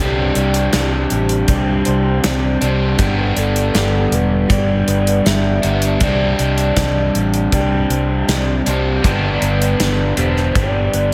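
Bathed in light studio reverb, this blissful, wistful stretch of shoegaze and dream pop rock in G major moves at 79 BPM over Csus2 and G chords, with a punchy gated 80s drum kit entering up front at 0.4 seconds beside a dark, round, foam-muted fingered bass, an overdriven semi-hollow guitar riff trailed by reverse reverb, a raw lo-fi garage guitar riff with subtle chorus, a warbling, detuned nostalgic lead melody with chorus and analog delay in the background, very quiet shimmering fingerpicked twelve-string arpeggios and mellow sustained French horn chords, and a bright, double-tracked crunchy guitar riff joining at 9.0 seconds.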